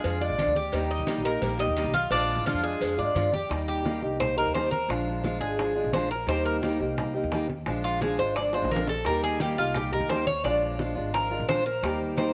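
A Cuban son and guajira excerpt in Eb major, this relaxed, sunny latin groove moves at a brisk 173 BPM in a straight 4/4, alternating between Bb7 and Eb. Up front, a Cuban tres plays bright, metallic arpeggios on its doubled strings, some of them octave-doubled, and steps forward for a solo from 3.5 seconds to the end. Alongside it, a dark, boxy parlour steel-string guitar is fingerpicked as accompaniment, with audible finger squeak. A woody, thumpy upright bass with gut strings anchors the low end in pizzicato. In the background, low-tuned congas with a thick, damped skin sit under a compressed, saturated cowbell and bongos played with soft hands, with a drum fill at 8.5 seconds, while grainy, distant maracas appear only until 3.5 seconds. A moderate plate reverb gives the whole a gentle sense of space.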